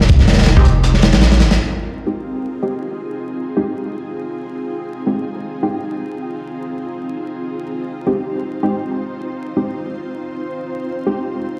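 Drum and bass with a jungle lilt, nostalgic and atmospheric, this cut from a longer piece opens on a drop where a crunchy, saturated breakbeat kit and a deep, long 808-style bass sit up front until 1.6 seconds, with the kick falling away at 0.8 seconds and a very quiet, dusty sampler-style kit adding a fat snare and hi-hat underneath. An ethereal, airy pad with ensemble chorus and built-in reverb holds mellow sustained chords from an opening Fm7 throughout, while a muted, detuned dub chord stab with filter sweep, 12-bit grit and dub echo drifts in and out. The whole sounds as if played on a big sound system in a bare room, with large studio reverb and vinyl crackle.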